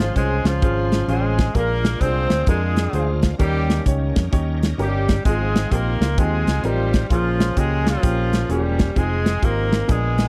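Uptempo gospel at 130 BPM with a swung 4/4 feel, soulful and jubilant, in a dry, close 1970s-style studio sound, cut from a longer piece. A breathy, whispered tenor saxophone carries the melody with vibrato and an intimate, soft attack, joined by a distant, roomy horn section, while a clear, worn grand piano comps over chords moving from Dbmaj7/Ab through Bb7, Eb7 and Ab6 to Fm7. Underneath, a dark, round fingered electric bass and an up-front acoustic drum kit with a tight kick and medium-tuned snare drive the groove, and a very quiet, lightly overdriven tonewheel organ holds sustained chords with key click and fast rotary shimmer.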